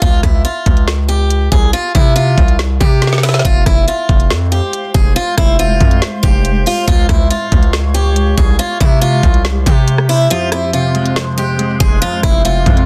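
Dark, melancholic trap-leaning hip hop at 140 BPM in a half-time feel, set in F harmonic minor and cut from a longer piece. A bright, boxy acoustic guitar picks a swing-style melody through tape echo from the start, riding over a heavy, saturated 808-style bass whose distorted sine tone carries a noise layer and a fast, decaying attack. The trap kit sits up front with a knocking kick, woody snare, crisp hats and rim clicks, rounding off the opening with a drum fill at 3.0 seconds before the harmony settles onto F minor. From 4.5 seconds a cloudy, granular pad drifts in with blurred, wave-folded sustained chords and its own reverb, while a dark, clean electric guitar joins at 10.3 seconds with a chorused accompaniment as the kick briefly drops out. The mix is dry, dense and heavily limited, with the drums, bass and guitars pressed close to the listener.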